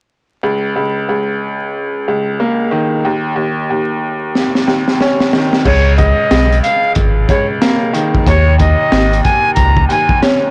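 Swung 16ths at 92 BPM drive this dark, reflective boom-bap hip-hop excerpt, where a brilliant, woody upright piano opens on C#sus2 chords, a crunchy, gritty breakbeat kit with a high-tuned snare and punchy kick arrives with a fill at 4.4 seconds, and at 5.7 seconds a breathy, unsteady concert flute takes the melody over a deep, saturated sub bass, the whole cut sitting in a dry, blown-out, overdriven recording laced with vinyl crackle.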